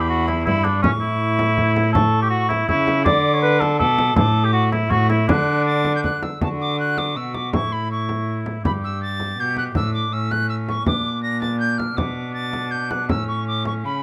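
An airy soprano recorder with a tongued chiff carries the melody of this stately, festive renaissance-style consort dance in D major, moving at 162 BPM in a straight 3/4 and cut from a longer piece. A mellow cor anglais with soft attack and light vibrato sings a second line, while a single bowed cello with gut-string, reedy tone holds the bass up front, and a frame drum played with soft hands enters at 0.3 s. The closely miked, dry sound brings out detail as a second phrase begins at 6.4 s, its harmony passing through A, G and a striking Bb before settling on B minor and A.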